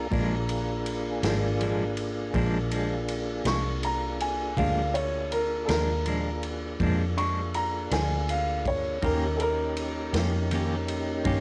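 A woody upright piano takes the solo from the opening moment over sustained tonewheel organ chords, colored by slow rotary speaker and chorus vibrato, and a round, foam-muted fingered bass, soon joined by clean picked electric guitar with tremolo and a small-room vintage drum kit of punchy kick, medium-tuned snare and dark ride cymbal, in this rollicking, laid-back slow blues excerpt at 54 BPM in 12/8 in Bb mixolydian that moves from Bb7 to Eb7 at 9.0 seconds, with the piano, organ, guitar and drums carrying a cassette-tape character in a dry home recording.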